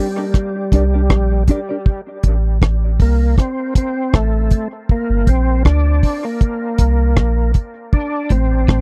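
A hypnotic, deep dub reggae groove in a straight 4/4 feel, cut from a longer piece and sitting in a break for most of its length. An overdriven tonewheel organ carries the melody up front, its full, gritty tone shaded by chorus vibrato, a slow rotary speaker and dub echo. A mellow electric guitar, dark, clean and fingered, adds accompaniment with subtle chorus and dub echo only in the first 1.8 seconds. A dry, dark reggae drum kit with a tight kick, hi-hat and rim click sits up front beside a soft, round sub bass with a fast attack and sustained notes. At 8.3 seconds a slightly broken-up, picked electric guitar riff appears in the background, over chords that move between Gm and Am and end on Amadd11, all in a close, dry 1970s-style studio sound.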